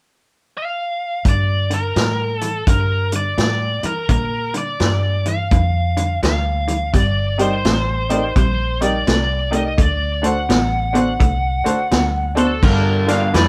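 A swung shuffle groove drives this brooding, mournful electric blues cut from a longer piece, as an up-front, overdriven lead guitar carries the melody from 0.6 seconds, soon joined by a vintage drum kit with dark cymbals and a punchy kick, a twangy, lo-fi electric guitar riff through a small old amp, and a round, foam-muted fingered bass moving through Gm7, Cm7 and D7, while a bright, woody, slightly detuned upright piano adds accompaniment from 7.4 seconds, the band playing together in one room with moderate reverb.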